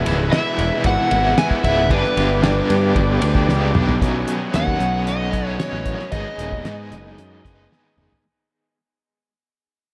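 Psychedelic rock at 114 BPM in a straight 4/4, this brief excerpt from a longer piece feels kaleidoscopic and hazy, its echo-heavy mix bathed in light studio reverb. An overdriven electric guitar drives the riff, bright, double-tracked and up front, colored by tremolo and analog delay, while a fuzz-laden picked electric bass sits equally forward with a round, overdriven tone. A cloth-damped drum kit gives a dry, thuddy foundation with a fat snare, tight kick, dark cymbals and a rolled-off top, its hits trailed by analog delay and punctuated by fills at 3.5 and 7.7 seconds. Over this, a dark, fingered slide guitar carries the overdriven melody through the delay, and a vintage combo organ holds buzzy, heavily vibrato-soaked chords in the background. The harmony moves from Eadd9 to G, then shifts at 4.0 seconds to Badd9 and G#m as the passage begins fading out.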